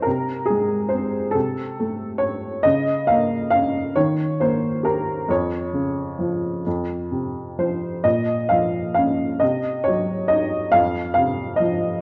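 Dark and reflective, this short passage of lyrical classical solo piano drifts in Bb minor at a slow 43-47 BPM in a rubato 6/8, tuned slightly flat to A4 = 439 Hz. The upright piano sits up front, sounding mellow, woody and boxy with short sustain, faint detuning and audible action noise. It moves through chords such as Bbm/Db, Eb and Cdim before settling on F5, all within a moderate recital hall reverb and the wobbling pitch drift of worn cassette tape.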